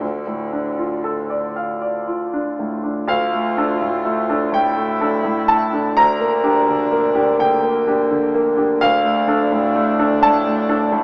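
A bright, up-front concert grand piano carries the accompaniment with deep bass while a single bowed, con sordino cello adds a veiled second line with light vibrato and slapback echo, both set in a lush hall reverb in this reflective, melancholic neoclassical excerpt in D minor, played in a rubato 6/8 at about 39-44 BPM over chords moving from Dm to Gm/D at 6.0 seconds and back to Dm at 8.8 seconds, with the rough sound of a home demo heard through a small speaker.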